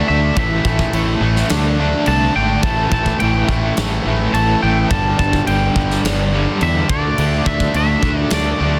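A straight 4/4 pulse drives this dark, angsty slice of quiet-loud alternative rock, cut from a longer piece, with a big acoustic drum kit joining at 0.4 s, its punchy kick, medium-tuned snare and crash cymbals ringing in a natural room. Two picked electric guitars carry the low riff, a crunchy overdriven one up front and a cranked stack guitar with tremolo sitting in the background, while a growly, fuzz-soaked fingered bass pushes forward beneath them. Over the top, a clean, twangy, scooped lead guitar plays the melody through slapback echo as the chords move from A5 through Dsus2 and G5, all set in light reverb and a dense, heavily limited modern master.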